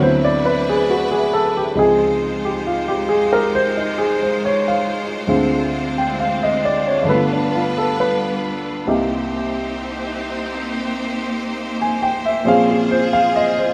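A slow jazz ballad at 68 BPM in 4/4 with a gentle swing, this short excerpt carries an intimate, smoky mood. A baby grand piano sits up front as the accompaniment, its tone warm and present, with audible action noise that brings the listener close to the keys. Behind it, a symphonic string section holds sustained, bowed chords, sounding clear and focused with a lush vibrato, yet placed at a distance beneath the piano. Both parts play throughout the 13.7 seconds, moving through harmonies such as D13, Dbmaj9, Dm7b5, G7, Cm7 and Bbm9. A moderate echo chamber reverb lends the whole a soft, lingering halo.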